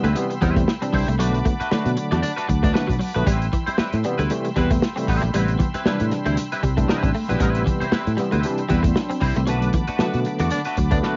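A sly, driving funk groove in A dorian at 116 BPM, cut from a longer piece, opens with the full band at once. A muffled, lo-fi soul drum kit with a tight kick sits up front, while a growly, punchy fingered bass adds saturated low end. An overdriven electric piano plays gritty stabs through a combo amp with fast tremolo, and a bright, twangy electric guitar comps with ensemble chorus. In the background, a clean picked guitar plays a riff, also chorused, and a smooth tonewheel organ holds high sustained chords with lush chorus vibrato. The harmony moves between Am9 and Bm7, with band accents at 1.2 and 9.5 seconds over lightly swung 16ths. A raspy baritone saxophone breaks in on a lone D4 at 2.2 seconds and again near the close, all within a reverberant studio sound flecked with vinyl crackle and a dulled top end.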